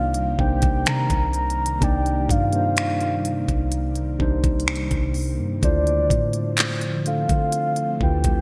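A slow, sensual contemporary R&B passage opens with a soft, octave-layered synth lead carrying a longing melody over a mellow tine electric piano, a deep, round 808-style bass and an ethereal, airy pad sitting in the background. The lead is full and dark-toned, sits up front, and is coloured by chorus, tremolo, vibrato and delay. The pad holds sustained chords with a slow attack and long release, treated with ensemble chorus, tremolo and its own built-in reverb, while the clean electric piano supplies gentle accompaniment. From 0.1 seconds a smooth, electronic drum kit joins with a knocking kick, crisp hi-hat, finger snaps and handclaps, all bathed in gated reverb. The harmony moves from Cm7 to Dm7 at 5.6 seconds, and a lush hall reverb and bright 1980s-style digital production frame this short fragment of a longer piece.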